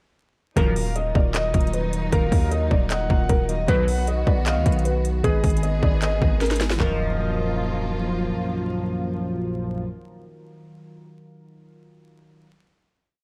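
A dusty bed of vinyl crackle frames this short, complete trap piece in Eb minor, which moves at 154 BPM with a half-time feel and a melancholic, menacing mood. A felt-muted upright piano carries a soft, intimate looping melody in the manner of a sampled loop, while glassy digital keys add rhythmic chords with a filter sweep and chorus in the background, and a symphonic string section holds a lush, bowed pad with gentle vibrato. Up front, a resonant, detuned polysynth fires short stabs colored by chorus and delay, while further back a breathy, flute-like synth lead with a vintage warble drifts through a sparse counter-melody. The trap kit hits hard with a clipped kick, sharp snare, metallic hats with fast rolls, claps and toms, while a heavy, punchy 808-style bass follows the kick with long sub notes and pitch slides. After a drum fill at 6.4 seconds, the hook gives way at 6.8 seconds to a sustained final Ebmadd9 chord carried by the strings and polysynth until about 9.8 seconds, with the digital keys ringing on to 12.4 seconds.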